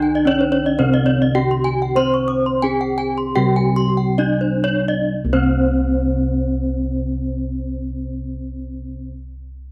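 Shimmering and ceremonial, this excerpt of Balinese gamelan in C pelog moves in a straight 4/4 between 60 and 125 BPM, slowing over the first 5.1 seconds before a new section begins, as an up-front horn-mallet bronze metallophone carries the melody with paired-tuning beats, a lower wooden-mallet metallophone rings out the accompaniment, two bright, close-miked metallophones spin high arpeggios, and round, beating bossed gongs anchor the bass in a boxy, dry small-room sound.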